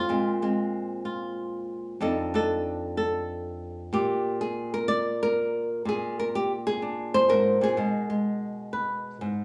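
A lone flamenco guitar opens this short solo jazz excerpt, cut from a longer piece and carrying a warm, playful mood. Played at 125 BPM in 4/4 with a swung eighth-note feel, the fingerpicked acoustic guitar sits up front and spans from F2 to D5 across the full 9.4 seconds. The harmony moves through Bbsus2, F6 and Bb13 before settling onto Abm at 7.8 seconds, giving the passage a lush, colourful shading. A large studio reverb adds a generous wet halo around the instrument, while a small room ambience suggests a live, in-the-room performance. The result feels intimate yet spacious, with the guitar's flamenco character lending a warm touch to the jazz harmony.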